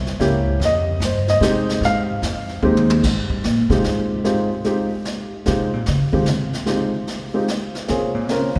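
A deep church reverb with a long, roomy tail surrounds this moody, swinging jazz piano trio in waltz time, a short excerpt cut from a longer piece. The baby grand piano carries the melody, sitting up front with an intimate, short-sustained tone in which the action noise is audible, and it takes a solo from the start until 3.0 seconds. Pizzicato upright bass on steel strings gives a woody, acoustic foundation, then steps forward for its own solo from 3.0 seconds to the end. A vintage kit played with brushes adds a brushed snare, hi-hat, toms, dark cymbals and a punchy kick, its top rolled off, with a drum fill at 2.6 seconds leading into the bass solo. The harmony moves from C7b9 to Fm9 and closes on Bbm9.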